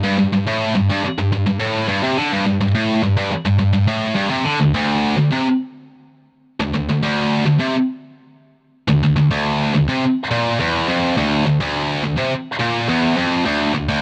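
A heavy high-gain electric guitar, bright and double-tracked, plays alone up front through distortion in this epic, heavy metal passage cut from a longer piece, picked in a straight 4/4 at 105 BPM in the low register between D2 and D3, with a dry, close 1970s-style studio sound, tuned to A4 = 439 Hz and shifting to a new section at 4.6 seconds before running to 14.0 seconds.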